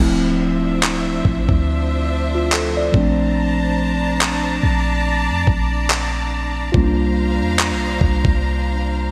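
Sensual and longing, this contemporary R&B fragment, cut from a longer piece, moves at an unhurried 71 BPM in 4/4 with a swung sixteenth-note feel in D minor. A mellow tine electric piano carries the accompaniment throughout, its clean, direct tone joined by a bright studio string section that holds sustained bowed chords with vibrato and an intense, close ensemble sound, breathing with sidechain pumping. Beneath them, a clean 808-style bass supplies deep, boomy sine tones with a fast attack that decays into darkness. At 0.8 seconds a dusty soul sampler-style drum kit enters with handclaps and a thumpy kick, overdriven, compressed and gritty, sitting up front until 8.4 seconds. The harmony drifts from Dm9 to Bbmaj9 at 2.9 seconds and settles on C9sus4 at 6.7 seconds. A moderate, lush hall reverb and a bright 1980s-style digital production give the short passage a glossy sheen.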